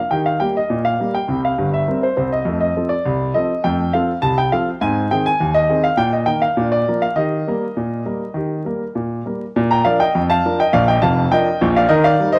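This short piece has a homespun, vintage sound, a home cassette recording with vinyl crackle and lossy artefacts, all set in a small room with light reverb. It is a jaunty, cheerful ragtime cut in Eb major at 102 BPM in 2/4, with a straight feel, taken from a longer performance. A solo concert grand piano plays up front for the full 12.4 seconds, its tone warm and smooth, with a deep bass that reaches down to F1 and a top that climbs to Bb5. The harmony moves through Eb, F, Ab and Bb before settling back on Eb, and a new strain begins at 9.5 seconds over a Bb chord just before the recording cuts off.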